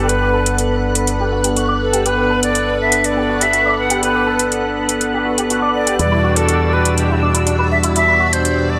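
Groovy, feel-good nu-disco at 122 BPM in G major, where an airy silver concert flute with vibrato and delay carries the melody over a smooth, detuned sawtooth analog pad with chorus and tremolo up front, a lush vintage string machine playing sustained chords through a filter sweep, phaser and ensemble chorus, a bright, twangy envelope-filtered electric guitar riff tucked in the background until 8.3 seconds, a tube-saturated fingered electric bass with an envelope filter, and metallic, up-front electronic hi-hats, all moving from Gmaj7 to Em7 at 6.0 seconds inside a moderate plate reverb and bright 1980s-style digital production.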